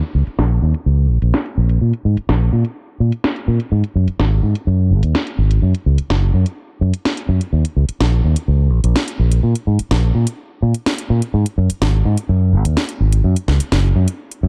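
Funky and sensual, this filtered disco house excerpt moves in a straight 4/4 groove and is cut from a longer piece. A house drum kit, electronic and layered, carries a cracking snare and metallic hi-hats with a tape-warm tone, all sitting back in the mix under low-pass filtering. A fingered electric bass enters at 0.1 seconds and stays up front, growly and punchy with a direct, amped tone, ranging from Gb1 to Bb2 under its own low-pass filter. Filter sweeps run across both the drums and the bass for the full length of the passage, shaping the groove as one continuous section. Digital ambience gives the production a dark, warm character.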